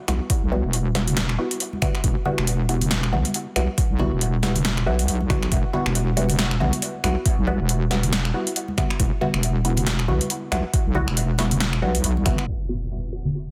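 A dense, heavily limited mix with light reverb and a low-pass filter opens this dark, heavy deep dubstep excerpt in E minor, moving at 138 BPM with a swung half-time feel. A saturated square-and-sine wobble bass with chorus sits up front under muted, detuned sawtooth chord stabs treated with phaser and dub echo, while an overdriven deep-house kit with punchy snare, finger snaps, hi-hat and crash plays alongside a deep, layered electronic kick, and acoustic congas with dub echo linger in the background. At 12.5 seconds the bass and kick have dropped away, and an up-front electronic impact lands as a filter sweep runs over the stabs.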